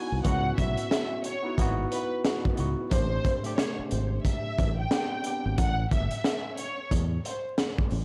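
Boom-bap hip-hop at 90 BPM with a swung 16th feel, moody and gritty, built on a crunchy breakbeat kit with a punchy kick and high-tuned snare up front, a round, dark fingered electric bass with tube saturation, a worn, slightly out-of-tune tine electric piano that stops at 5.6 s, and a lush, bowed violin section carrying the melody with vibrato and analog delay until 7.4 s, moving from C#m11 to Am11 at 2.9 s amid a dry hardware sound and vinyl crackle in this short cut from a longer piece.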